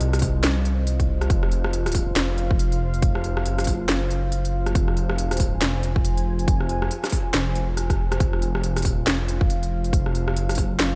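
A half-time, swung groove of punchy, tape-warm electronic kick and a garage kit with cracking snare, crisp hats, handclaps and rim clicks drives this dark, heavy deep dubstep excerpt, over a rumbling, beating detuned saw bass up front and a moody, wave-folded ambient pad of sustained chords bathed in chorus and its own reverb, with a drum fill at 7.8 seconds.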